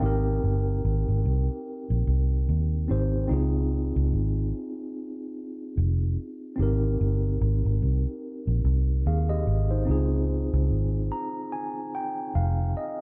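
Sweet and tender, this short lovers rock reggae excerpt pairs a mellow, clean tine electric piano heard through built-in speakers with an up-front, dark, foam-muted fingered electric bass that sounds round and amped, over a gently swung pulse and lush major-seventh chords, as the piano takes a brief fill from 10.7 seconds in a digital ambience touched by lossy compression artefacts.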